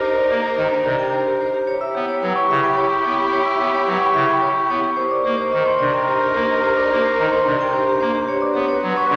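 A ringing, metallic vibraphone melody opens this urgent yet meditative minimalist classical piece at 109 BPM in 3/4, sounding from the start alongside bell-like glockenspiel and woody, mellow marimba arpeggios, a distant clarinet second line and lush, bowed violin chords, while a hollow clarinet-stop pipe organ with a touch of chiff joins at 0.3 seconds, the ensemble set in a wet scoring-stage reverb as the harmony moves from Cm7 through Em to Gmaj7.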